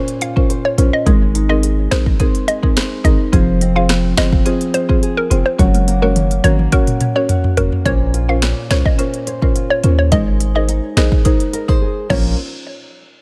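Dancehall at 106 BPM in Bb minor, sultry and hypnotic, this excerpt sets a buzzing, woody marimba and a thumb-plucked nylon-string guitar playing arpeggios under a hollow, bouncy square-wave pluck melody coloured by chorus and tape echo. An electronic afro-pop drum kit with a deep kick, sharp snare and smooth hats sits up front alongside a boomy 808-style bass that enters at 0.8 seconds, over chords moving from Bbmadd9 through Abadd9, Fm and Gb. A drum fill runs from 5.6 to 7.9 seconds into the second section, and a brief break arrives at 11.8 seconds in a dry, close-sounding mix.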